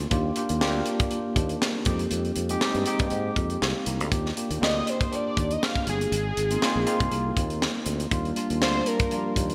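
Breezy and glossy, this short cut of polished 1980s jazz-funk pop in Eb major moves at 120 BPM with a light 16th-note swing, as a clean, up-front tine electric piano with lush chorus (adding a brief fill at 3.4 s) floats over Ebmaj7, Fm7 and Ab6 chords, a growly, bright fretless bass sustains beneath, a tight funk kit punches with a high-tuned snare and gated reverb, and from 4.6 s a fat, detuned sawtooth lead with sub octave, filter sweep and vibrato sings the mellow melody, all bathed in a lush hall and bright digital 1980s-style production.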